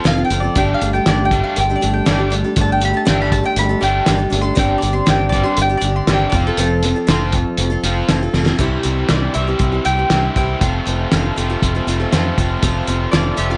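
Open-road and jangly, this folk rock and heartland rock excerpt rolls along in a straight 4/4 feel. A mandolin carries the melody with a round, double-string tone, soloing through the first 8.6 seconds over F, Gsus2 and Csus2/G. Beneath it, a picked acoustic archtop guitar gives boxy accompaniment with audible finger squeak and a touch of plate reverb, while a bright, overdriven and double-tracked garage guitar plays a riff. A fingered electric bass sits up front with a dark, punchy sound, and a cloth-damped kit of hi-hat, kick and snare thuds in a muffled, gritty, lo-fi way, with a fat snare and tight kick. A drum fill at 8.3 seconds leads into a new section built on C and F, and light reverb gives the whole mix a small sense of space.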